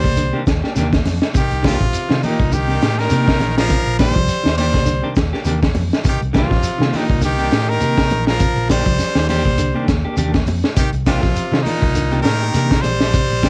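A lightly swung sixteenth-note afrobeat groove on a crunchy, saturated breakbeat kit with a high-tuned snare and punchy kick drives this defiant, funky excerpt, where a round, amped fingered electric bass sits under clean electric guitar stabs treated with tremolo and dark arpeggios from a second electric guitar entering at 0.2 seconds, while bright congas and a grainy shekere sit in the background and a brilliant, close-miked trumpet with scooped notes carries the melody over a raspy, growling tenor saxophone second line, the whole captured as a home cassette recording with light reverb.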